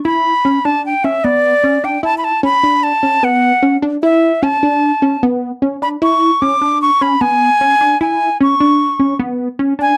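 A breathy, bright concert flute carries the melody up front from 0.1 to 10.0 seconds, ranging from D5 to D6 with a straight, tongued tone that is unsteady. Beneath it, a tight sequenced synth spins arpeggios between B3 and E4, its detuned sawtooth and square-wave sound shaped by a filter pluck and a fast attack, then sustained and coloured by chorus and phaser. This intricate, driving progressive instrumental moves at 151 BPM in 5/4 with a straight feel, resting throughout on an E7 chord with its third omitted. A moderate small-room reverb and a dark, warm production frame the two parts. This brief passage is cut from a longer piece.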